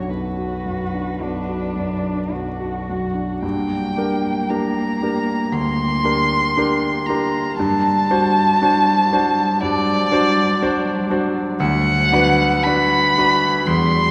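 A rubato 4/4 pulse at 53-61 BPM carries this yearning, melancholic slow romantic movement for piano trio, a cut from a longer piece, as a muted violin sings a dark, veiled con sordino melody with vibrato and portamento over a clear, intimate grand piano accompaniment whose long sustain and audible action noise sit up front, while a muted cello adds a quieter, smooth-topped second line from 0.1 s, all in B minor turning to G minor at 3.4 s and bathed in the 5.0-second cathedral reverb of a church or concert hall.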